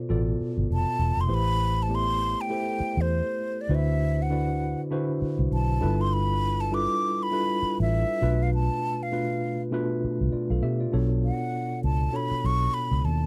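A dry, close 1970s-style studio sound with light reverb frames this bittersweet, silky slice of lush soul at 100 BPM, swung on the sixteenths. A worn, slightly out-of-tune tine electric piano heard through its built-in speakers and a dark, round, punchy, foam-muted fingered electric bass carry chords such as Bm7b5, Am9, D13 and G13. A breathy, hollow silver concert flute with vibrato enters at 0.7 seconds for a close-miked solo. Around 10.9 seconds the harmony settles onto Bm9 as a new section begins, and the clip runs on for a couple of seconds before it cuts off, taken from a longer piece.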